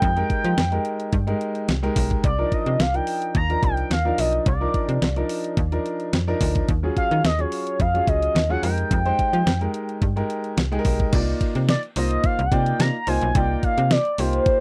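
An excerpt of danceable, late-night early-eighties boogie funk opens with everything at once: a crisp 8-bit drum machine with a thumpy kick and fat snare sits up front beside a snappy, metallic FM bass, while a clear baby grand piano adds intimate accompaniment, its action noise audible. Over them, a smooth, wave-folded portamento lead with chorus and vibrato sings a mellow, expressive melody across minor eleventh chords. The sound is dry and close, in the manner of a 1970s studio, and the groove moves into a new section at 11.1 seconds, with the bass dropping out at 14.4 seconds just before the others stop.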